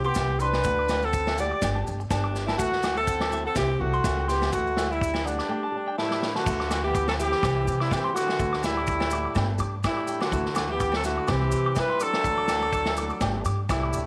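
A lightly swung 4/4 groove at 124 BPM drives this joyful highlife guitar band excerpt in D mixolydian, with a vintage drum kit giving a punchy kick and medium-tuned snare under a rolled-off top, joined by grainy maracas and ringing agogo bells in the background. A tight, up-front horn section carries the melody with light vibrato in a jazz style, while a woody, growly pizzicato upright bass anchors the low end. Behind them, a dark, fingerpicked flamenco guitar supplies accompaniment and a twangy, compressed clean electric guitar picks high arpeggios through a slapback echo. The chords cycle through C, Dadd9 and Gsus2. At 6.0 seconds a buzzy trombone with a metal mute enters with a thin, brilliant second line in the background, as a drum fill ushers in the second section. Light reverb and a small room ambience round out the recording.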